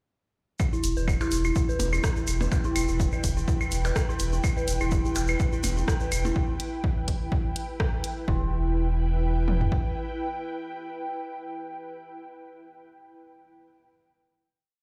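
A punchy analog drum machine drives a four-on-the-floor kick with toms at 125 BPM in swung 4/4, joined by a garage drum kit's programmed closed hats and rim backbeat, clave-and-woodblock blips in cross rhythm, and a grainy, bright tube shaker in hand-played sixteenths, with the blips and shaker dropping out by 6.3 seconds. Beneath this, a thick, saturated sine sub bass pumps off the beat on E, while an eerie, inharmonic FM bell with chorus, phaser and delay repeats a six-step loop that drifts against the bar. An ethereal, detuned pad with ensemble chorus slowly shifts chords in E minor and carries the clinical, cool minimal techno piece into a final chord from 8.3 seconds, all set in a light stone-room reverb.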